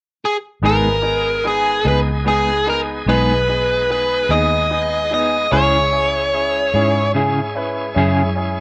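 A slow, mournful blues rolls in a straight 12/8 feel, with a biting, overdriven lead guitar stepping up front at 0.3 s to sing a brooding melody until 7.1 s. From 0.6 s a brilliant grand piano with audible action noise, a dark, clean, fingered guitar with tremolo, and a round, foam-muted fingered bass fill in beneath, while a shouting, lightly overdriven tonewheel organ with key click and slow rotary speaker holds chords in the background. The harmony shifts to a new minor chord at 5.5 s, and the whole cut from a longer piece carries light reverb and a rough home-demo mix.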